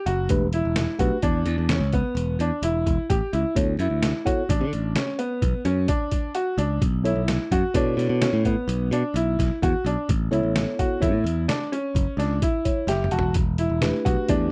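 Progressive instrumental band music in 7/4 at 129 BPM, this driving, tense excerpt in E dorian moves through Em, D6, Bm7 and Emadd9 over about 14.5 seconds. A brilliant, up-front grand piano plays arpeggios while a growly, picked electric bass and a compressed, pitched-down sampler-style kit with a thumpy kick and gritty, tape-toned character drive the groove. A clean tine electric piano heard through its built-in speakers adds accompaniment and a fill at 12.4 seconds, just before a drum fill at 12.9 seconds, all in a dry, close 1970s-style studio sound.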